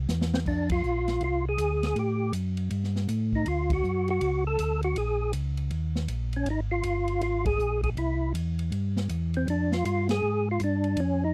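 A dry, close recording with a 1970s studio feel carries this brief, smoky soul jazz organ trio cut from a longer piece, swinging in 4/4. A swinging big-band drum kit plays a short fill at 0.1 seconds, its punchy kick, medium-tuned snare, hi-hat, ride and crash sounding airy and polished, set a little behind the organs. Underneath, a mellow tonewheel organ handles the bass line, its round, dark, clean tone marked by key click and a slow rotary speaker. Up front, a second tonewheel organ takes the melody with a fat, lightly overdriven, percussive voice, its third harmonic percussion, chorus vibrato and slow rotary adding a soulful shimmer. The band hits accents together at moments such as 0.6 and 10.0 seconds, over shifting chords that begin on Fm6 and close on Fm69.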